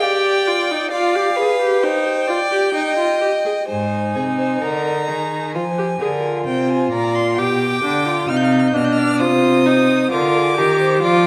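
A contemplative yet driving baroque-style fugue for string quartet at 66 BPM in 4/4, cut from a longer piece, in which two bowed violins carry the high melody and a second line with vibrato, portamento and soft, expressive attacks, the viola adds a smooth, even accompaniment up front, and the clear, focused cello enters on the bass at 3.7 s, all in a wet recital hall as the harmony moves from G7 through Ab and Dm7b5 to close on Cm.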